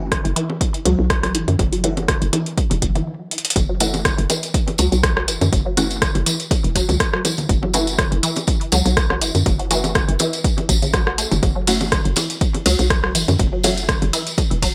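Lightly reverberant and clinical, this sparse minimal techno excerpt in F# minor at 122 BPM sets a punchy, overdriven analog kick and a hollow, bouncy FM bass with sidechain pumping beneath a small-room kit of metallic hi-hats, ride cymbal and rim click, background bongos and congas with analog delay, a squelchy, resonant blip pluck riff with phaser and ring modulation, and muted, deep dub chord stabs with chorus and delay, until a brief stop at 3.1 seconds and a drum fill lead into the drop at 3.6 seconds, where a jingly, vintage tambourine joins.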